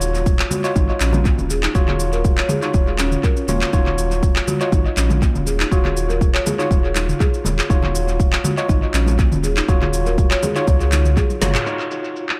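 Afro house with an earthy, hypnotic pull, where a worn, slightly out-of-tune tine electric piano stabs an Ebm9 chord through overdrive, pumping and tape echo over a round, dark analog bass, a deep tape-warm electronic kick, an afro-pop kit of cabasa, handclaps, woody snare and filtered toms, ringing congas and a dry, rustic marimba rippling arpeggios in the background, all bathed in an echo-heavy mix until a drum fill and band accent near 11.4 seconds round off the section.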